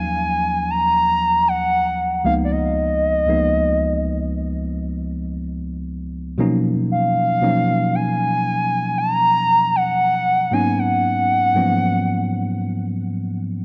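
A hollow, woody clarinet-like synth lead with chorus, delay and vibrato carries the melody over a worn, slightly out-of-tune tine electric piano moving through lush chords from D#m9 to G#m11 in this romantic, smooth R&B fragment, which is cut from a longer piece, where the lead falls away at 12.9 seconds and the piano rings on in light reverb until 13.6 seconds.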